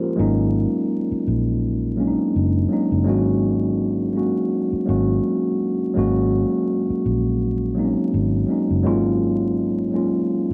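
A relaxed, soulful neo-soul groove at 83 BPM with a light 16th-note swing carries this short R&B excerpt, where a mellow tine electric piano, clean and heard through built-in speakers, sits up front from the start, joined at 0.2 seconds by a dark, round, foam-muted fingered electric bass on an Ab9sus4 chord, all captured dry on cassette with vinyl crackle.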